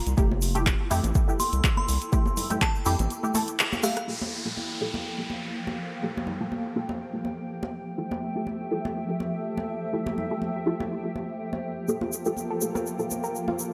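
Moody and warm, this deep house excerpt moves at 123 BPM in G dorian with a light swing on the sixteenths, cut from a longer piece. An overdriven electronic kick and a punchy analog drum machine with crash, handclaps, hi-hat and rim click sit up front, joined by a round, dark analog bass, a close, grainy egg shaker and ringing, high-tuned congas. A muted, detuned dub chord stab with phaser, chorus and dub echo pumps over a cloudy granular pad, while a glassy FM bell adds a crystalline melody from 1.4 s. The kick falls away at about 2.7 s and the bass at about 3.1 s. After a band accent and drum fill, the drum machine and shaker drop out at about 4.1 s, leaving the congas, granular pad and stab as a smooth, warbling vintage pad and an electronic downlifter arrive, and the chords shift from Fmaj9 to Gm9. Near the end the shaker returns and a soft, gentle pluck plays arpeggios in the background, all set in a lush hall reverb.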